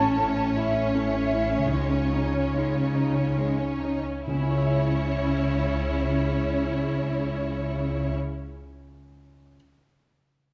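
Cinematic, emotional film score in C# minor, sorrowful and longing, a 6/8 excerpt at a slow 44-55 BPM that moves with rubato and slows through its opening 4.3 seconds as the harmony drifts from A to C#sus2 and settles on C#m. A lush, expressive violin section carries the melody with vibrato over a mellow, hollow flute section in the background and a second, symphonic violin line with a smooth top, while a softly attacked viola section with portamento and a polished, background grand piano fill the accompaniment, a ringing concert harp plays quiet arpeggios, and rich cellos with even double basses anchor the low end. The strings, flutes and basses stop at 8.1 seconds, the harp rings on to 8.4 and the piano lingers alone until 9.6 seconds, all in the moderate bloom of a scoring stage.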